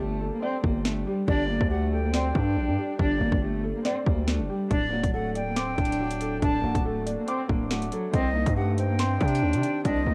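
Cassette-toned home recording in a small room frames this menacing, ominous drill excerpt at 140 BPM in half-time G harmonic minor, where a dark, woody bowed cello with vibrato and analog delay sings the melody from a distance over a felt-muted upright piano with audible action noise, a heavy, saturated distorted 808-style bass sits up front from the start, an overdriven drum kit with a hard-clipped kick, sharp snare and metallic hats enters at 0.6 seconds, and a breathy, close-miked silver concert flute with analog delay adds an expressive second line from 1.3 seconds as the chords move from Gsus2 to D and Cm.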